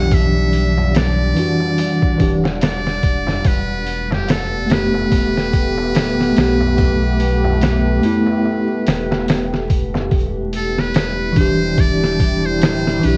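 A slow, swung trip hop groove from a gritty, pitched-down sampler-style kit with a thumpy kick anchors this brooding, cinematic excerpt, where a buzzy, close-miked muted trumpet with scooped notes carries the melody over bell-like tine electric piano chords with harmonic tremolo, a dark detuned sawtooth pad, a round dub sub bass and a distant clay-shelled darbuka that drops out at 10.1 seconds, all wrapped in cassette tape grain and vinyl crackle as Em7 moves to Gadd9 and back.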